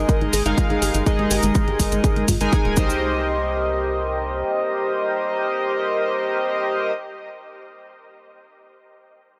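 Progressive house in a straight four, driving and emotional, heard in a short excerpt cut from a longer piece. A glossy, retro polysynth sits up front with chorused stabs, while a soft, round pluck plays arpeggios further back, both carrying sidechain pumping and digital delay. Underneath, a tight sequencer bass with a sawtooth edge pumps along until 4.4 s, and a filter sweep moves over both the bass and the pluck through the opening 3 seconds. A punchy, layered electronic kick and an electronic hi-hat drive the groove alongside a grainy, bright cabasa in the background, all three dropping out by 3.0 s. The harmony moves from Absus2 to Cm7, with the pluck and polysynth carrying on together through to the end under light reverb.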